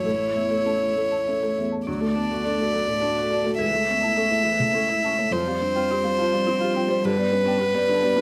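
Intimate and tender, this short neoclassical passage for piano and strings sways in a rubato three-four. A solo violin carries the melody up front with a pure, floating tone, its soft attack and airy, sul tasto bowing keeping the line close and gentle. Beneath it, a felt-muted upright piano gives mellow, thickly padded accompaniment, with its action noise audible. In the background, a single cello adds a dark second line with light vibrato, while a woody viola fills in accompaniment, also played sul tasto. A rustic marimba with hardwood bars and medium mallets enters at 0.1 seconds with dry arpeggios, and the harmony moves from A through D, A/C#, Fsus2 and G under light reverb as a second section unfolds from 1.9 seconds.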